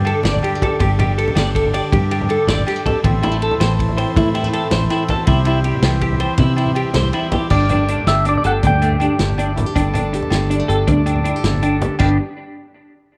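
A joyful highlife guitar band excerpt in 12/8 at 107 BPM opens with a dark, full-bodied fingerpicked nylon-string guitar in the background, a buzzy combo organ holding sustained chords through a phaser, a round, foam-muted fingered electric bass and ringing agogo bells. Almost at once a fingered clean electric guitar adds warm, twangy, scooped arpeggios with ensemble chorus and tape echo, alongside a punchy vintage drum kit with a rolled-off top (kick, snare, hi-hat, ride and crash) and very quiet, soft-handed congas. At 7.5 s a second clean electric guitar, picked, bright, compressed and twangy, carries a melody with tape echo until 11.6 s, as the chords, having moved through Gsus2, Am and C, return to Gsus2, all set in a moderate echo chamber reverb with small room ambience.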